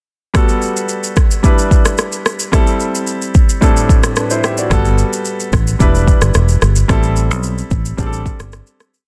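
A straight afrobeats groove of deep, soft kick, syncopated rim clicks and shaker, with soft clipping on the snare, drives this breezy, sunny piece as a warm baby grand piano pushes short-sustained drop-2 chords through Gmaj9, Em7, Am7 and D7sus4, dressed with grace notes and brief fills, while a punchy, foam-muted fingered electric bass joins at 4.7 seconds with a bouncy syncopated line and slides, the whole set in light reverb under a dense, heavily limited modern master before a fade-out from 6.9 seconds.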